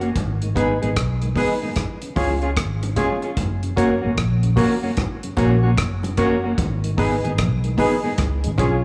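Roots reggae in F# major at a relaxed 75 BPM, this short excerpt from a longer piece feels laid-back and uplifting, with a swung sixteenth-note lilt in 4/4. A deep, dry drum kit with a tight kick, hi-hat and rim click sits under a dark, round, foam-muted electric bass that stays punchy and up front in its low register. A mellow, clean electric guitar played with the fingers adds dark accompaniment treated with tape echo, while hollow, percussive organ stabs with a fast attack and decaying tail carry a chorus shimmer higher up. A lightly overdriven tonewheel organ with vibrato fills in very quietly from about 0.4 seconds, and low-tuned bongos struck with hard hands sit in the background from 0.2 seconds. The chords move from G#m to C# to F# and back, all set in a moderate stage reverb with a touch of small-room ambience.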